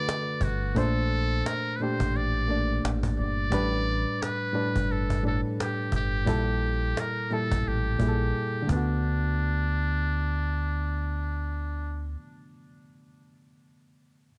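Cosy and nostalgic, this short lo-fi hip hop excerpt in D major swings at 87 BPM, with a buzzy, breathy metal-muted jazz trumpet carrying the melody through plate reverb and tape echo, a barky, reedy electric piano with cassette-tape colour sounding through its built-in speakers, a snappy small-room cajon with gritty 12-bit sampler texture that drops out between 8.3 and 9.0 seconds, and a dark, round dub bass played with fingers, moving over chords from D6 through Bbmaj9, A9sus4 and Gm6/Bb back to D6.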